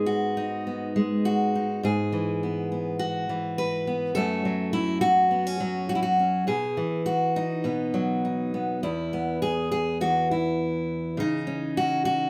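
A fingerpicked steel-string acoustic guitar plays alone and up front, its fresh strings ringing bright, with an audible finger squeak, across a range from E2 to B4. This peaceful, warm folk piece in E major moves at 103 BPM in a straight 4/4, its harmony drifting from G#m through F#m to a suspended B before settling on E5 at 8.8 seconds and C#madd9 at 11.2 seconds. A wet studio reverb gives the short passage, cut from a longer piece, a gentle sense of space.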